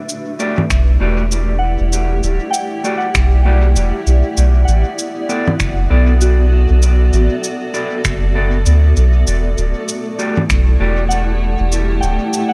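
Ambient dub in E minor at 98 BPM, this short excerpt from a longer piece moves in 4/4 with a swung sixteenth feel and a spacious, deep mood, its chords shifting from Em11 to Bm7 at 4.4 seconds and back to Em11 at 9.3 seconds. A cloudy granular pad holds sustained, detuned chords that blur and evolve under a moving notch, slow to bloom and long to fade in its own built-in reverb. The round, soft sub bass sits up front from 0.7 seconds, anchoring the low end with sustained triangle and square tones. An electronic shaker, congas and finger snaps carry the groove with studio reverb and dub echo, while a very quiet analog kick, re-recorded in a large room, adds a deep pulse underneath. A dark, clean, fingered electric guitar drops stabs into dub echo, and a pure FM synth bell traces gentle, decaying arpeggios with chorus and echo from 1.6 seconds onward.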